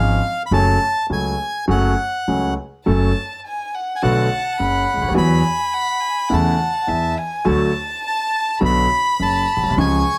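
Tense and sultry, this short tango excerpt moves at 104 BPM in 4/4 with a rubato feel, set in F# minor. A reedy, dark bandoneon carries the melody up front, its close, dry sound full and intimate. Beneath it, a bright concert grand piano supplies brilliant, polished accompaniment with deep bass and a present tone, while an acoustic upright bass, plucked pizzicato with a woody steel-string voice, anchors the low end. At 2.9 seconds a single bowed violin enters as a second line, expressive with vibrato, soft attacks and portamento slides. The harmony wanders from F#madd9 through Bm7, Esus2, A/E and D before settling on Bm, all in a moderate studio ambience.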